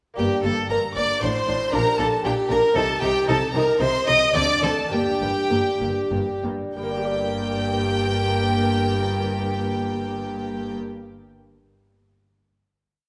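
A mellow, fingerpicked lute opens at 0.1 s with delicate rolled chords in the background, joined at once by a full string ensemble in this short, stormy baroque-style concerto movement in G minor, moving in a driving 3/4 at 92-117 BPM before slowing from 2.5 to 6.8 s. A rich, focused chamber violin section carries the high melody, doubled by a smooth, even solo violin and by a warm, soft-attacked violin section played sul tasto with light vibrato. Beneath them, violas repeat notes and sustain chords, a distant cello section plays repeated and sustained bass notes, and a dark double bass section with portamento doubles the bass line, all bathed in a wet concert hall reverb until the ritornello settles onto a final chord held from 6.8 s.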